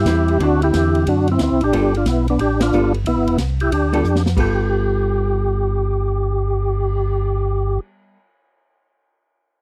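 A dry, close 1970s-style studio sound with light reverb frames this short, greasy soul jazz organ trio cut, swinging at 181 BPM in G mixolydian over D9 and G9 chords. A fat, lightly overdriven tonewheel organ with percussive key click, chorus vibrato and slow rotary speaker carries the melody up front, while a second organ, round and mellow, holds down the bass, and a clean, picked hollow-body electric guitar comps beneath them. A polished, airy drum kit with punchy kick, hi-hat and ride cymbal powers the groove, with a band accent at 2.6 seconds and a drum fill at 4.0 seconds before the drums stop at 7.0 seconds.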